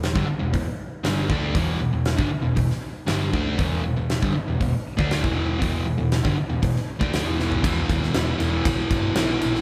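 A sludgy, overdriven electric guitar leads this menacing hard rock excerpt, its double-tracked, picked riff sitting up front and ranging from E2 to D4. The track moves at 118 BPM in a straight 4/4 in E minor, tuned to A4 = 438 Hz, and is cut from a longer piece. Beneath it, a dark, round hollow-body short-scale electric bass, picked and amped, carries the low end from E1 to D#2. A huge arena drum kit, also up front, brings bright cymbals, a fat snare and a punchy kick across crash, hi-hat, toms and the rest of the kit, with a drum fill at 7.4 seconds. That fill leads into a shift from an Em chord to an E5 at 7.6 seconds, where a short new section runs to the end. The band plays live in one large studio room, and a moderate reverb gives the heavy sound a roomy, hall-like depth.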